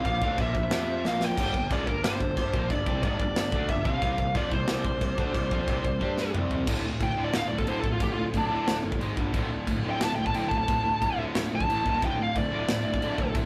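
A dark, high-gain lead guitar sits up front over this heavy, dark metal excerpt in D minor at 180 BPM, carrying the melody and breaking into a solo at 6.7 seconds. Beneath it, three bright, picked rhythm guitars (a compressed distorted one in the background, a double-tracked fuzz guitar and a very quiet high-gain one) drive the riff alongside a growly, overdriven fuzz bass, while a polished, airy acoustic drum kit with a tight kick, a medium-tuned snare, toms, crash and china cymbals stays forward and adds short fills. A very quiet, lush bowed string section with vibrato holds sustained chords through the opening and returns at 12.0 seconds, all within a rough rehearsal-room sound with light reverb.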